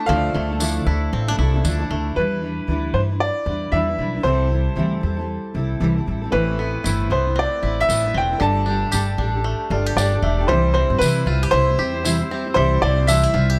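Bathed in studio reverb, this sunny, easy-going acoustic pop excerpt with a gentle swing sets a clear, boxy upright piano melody up front with a touch of delay over a full-bodied, double-tracked fingerpicked steel-string guitar, a thumpy pizzicato upright bass, twangy banjo arpeggios, a jingly vintage tambourine and a second upright piano, dark, worn and slightly detuned in the background, which drops out from 2.2 to 6.3 seconds, before an upright piano fill at 9.4 seconds.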